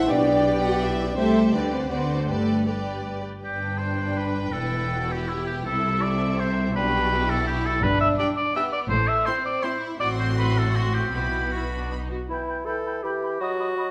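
In a reverberant recital hall, a quick, restless classical-period orchestral movement in 3/4 at 163 BPM pushes forward with rubato from G major toward E minor at 7.8 s: a distant, vibrato-rich violin section carries the melody over smooth second violins, focused violas, background cellos and lush double basses, while dark French horns hold brief opening chords, a bright clarinet and a pure flute add lines at the start, a clear oboe steps up front from 3.4 s, and a warm bassoon joins at 12.3 s as this urgent fragment closes.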